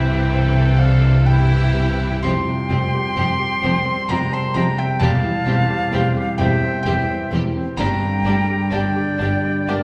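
A hopeful, uplifting cinematic film score opens with the full orchestra at once: a felt-muted upright piano gives a soft, intimate accompaniment while a concert harp rings out arpeggios, over rich bowed cello and double bass sections anchoring the bass in C mixolydian. At a slow, rubato 65 BPM in 3/4, a rich violin section carries the melody in the background, joined by a clear solo oboe, a pure, hollow concert flute and a second, clear violin section, with a very quiet viola section adding accompaniment and a dark French horn section sustaining chords beneath. The chords move from C through Fsus2 and C/E to Gm by 7.8 seconds, all bathed in the wet reverb of a recital hall in this brief section cut from a longer piece.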